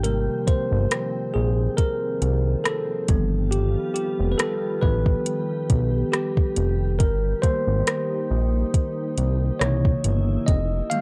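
Late-night and longing, this slow contemporary R&B excerpt at 69 BPM in 4/4 carries a light sixteenth-note swing, with a bell-like tine electric piano taking the solo over Abmaj7, G7b13, Cm7/G and C7b9 chords that settle on Fm11. A glassy, ethereal FM pad with ensemble chorus and built-in reverb sustains chords beneath, while a fat, detuned analog bass with ring modulation and a filter sweep sits up front until 10.8 s. A produced drum kit with a soft kick, metallic hi-hats and rim clicks completes the groove, all captured with a dry, gritty cassette-tape character.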